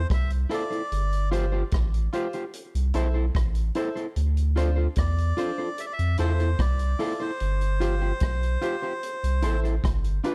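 A dark, dry, warm production frames this sunny roots reggae excerpt at 74 BPM in C major, where a deep, round sub bass sits up front with a natural drum kit of punchy kick, hi-hat and rim click under a rolled-off top, while from 0.5 s a slightly broken-up electric guitar with tape echo comps along and a bright, woody, slightly detuned upright piano adds stabs over Fmaj7, G7sus4, C6 and Dm7 beneath a reedy, breathy, close-miked melodica melody touched with tape echo and plate reverb.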